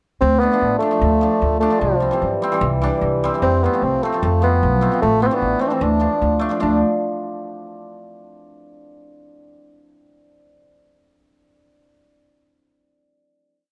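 This is a short, complete klezmer piece at 150 BPM in 4/4 with a straight feel, tuned to A4 = 441 Hz, and its mood is bittersweet and soulful. A dark bassoon carries the solo melody up front in a classical style, playing a modal line with ornaments and a smooth top to its tone. Beneath it, a pizzicato upright bass with steel strings gives a woody quarter-note figure, while a hammered cimbalom, entering at 0.4 seconds, adds shimmering, ringing triad chords on the off-beats. The harmony moves from Dm through C and F to Am before returning to Dm, and the instruments stop at 6.8 seconds as the closing chord rings on until 8.2 seconds. A light reverb gives the trio a sense of space.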